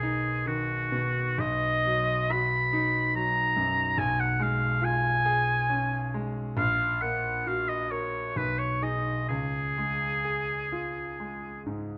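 Lyrical and warm, this romantic classical duo in a rubato triple metre sets a warm, vintage-toned oboe melody with light vibrato up front over a clear concert grand piano accompaniment with deep bass, the oboe falling silent at 11.6 seconds while the piano carries on to 12.0 seconds, all captured by close, detailed microphones in a moderate recital hall reverb and cut from a longer piece.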